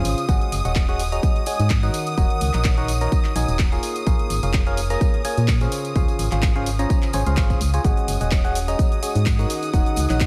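A lightly swung 16th-note groove at 127 BPM in 4/4 drives this joyful, feel-good piano house excerpt in Db major, where an overdriven, up-front electronic kick arrives at 0.3 s beneath tape-warm analog drum-machine handclaps, hi-hat and shaker and a tambourine in the background, while a hollow, organ-like FM bass and a biting, warbling FM electric piano riff with phaser and tape echo pump with sidechain, a dark, woody violin section holds sustained chords, and a breathy, very quiet pad adds an airy texture over a progression from Ab7sus4 through Ebm7, Bbm7 and Dbmaj7, all set in light reverb.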